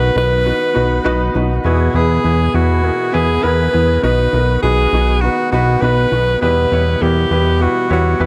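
A straight 4/4 groove carries this hopeful, warm piano-driven pop fragment, where a fat, saturated analog bass sits up front beneath the soft, intimate accompaniment of a felt-muted upright piano. A bright alto saxophone sings the melody with pop-style vibrato, while a gritty overdriven tonewheel organ holds very quiet sustained chords through a slow rotary speaker. The harmony moves from B to E and back, turning to E minor at 6.4 s, all within light reverb and small-room ambience.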